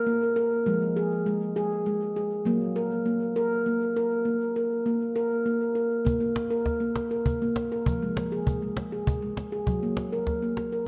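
A ringing nitrided-steel handpan, struck with the fingertips and placed up front, opens this short passage from a longer piece, spinning arpeggios between F3 and Bb4 through a diffuse ambient delay. The music is meditative world fare in a slow, hypnotic 6/8 with a straight feel, its gentle harmony circling between F minor and G-flat with open, chordless moments in between. At 6.1 seconds a close, dry cajon joins up front, its woody acoustic tone carrying faint snares and sitting a little lower in the mix than the handpan. The handpan's vintage, band-limited character gives the sound a soft, rounded glow. A dark production and a wet echo-chamber reverb with a long tail surround the instruments, letting each phrase linger in a hushed, trance-like space.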